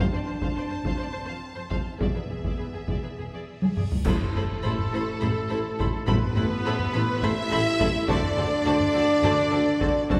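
Up-front taiko drums, struck with hard sticks and given a compressed, saturated punch, drive this heroic, epic orchestral film-score excerpt at 208 BPM in a straight 7/8. A lush string body of bowed violins, violas, a dark, woody cello section and a rich double bass section plays throughout, with vibrato, while a mellow French horn section holds sustained chords beneath the violin melody and a second violin line. The opening moves from F6 to E before a drum fill and a very quiet, huge reverse cymbal lead into an ensemble accent at 4.1 s, where bright, close clash cymbals and concert bass drum strike and the music settles into A dorian on Amadd9, later shifting to D7. At that point clear trumpet stabs and a soft-attack tuba join from the background. A wet recital-hall reverb gives the ensemble the spacious ring of a church or concert hall.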